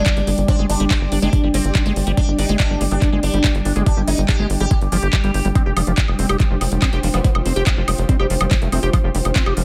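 An overdriven, knocking electronic kick sits up front in this intense psychedelic trance piece at 142 BPM, joined by a layered garage kit of handclaps, metallic hi-hats and woodblock, while a tight, punchy sequencer bass drives underneath and a squelchy, resonant liquid acid bass riff carries phaser and dub echo. A bright, buzzing sitar with shimmering sympathetic strings plays the melody through gritty sampler colour and dub echo until 5.5 seconds, just before the harmony moves from G5 to F5 at 5.6 seconds, as a swarming, detuned drone and an ethereal, airy pad pulse with sidechain pumping in the background. Near the end a very quiet formant-sweep wobble bass enters at 7.1 seconds and a barely audible riser arrives at 8.9 seconds in this short cut from a longer piece.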